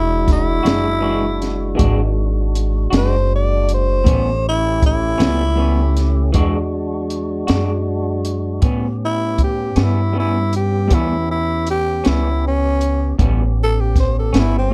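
Rolling in a slow, straight 12/8 at 53 BPM, this rollicking, gritty blues in A mixolydian moves between E9 and A9 over a thumpy, woody pizzicato upright bass and a compact cocktail drum kit with a punchy kick, high-tuned snare and rolled-off top. A fat tonewheel organ holds sustained chords through a slow rotary speaker with audible key click, while an electric guitar through a small old amp adds slightly broken-up, lo-fi accompaniment with harmonic tremolo. Up front, a raspy, growling tenor saxophone carries the melody with scooped notes and light vibrato, stepping into a solo at 8.6 s, all in a dark production with light reverb.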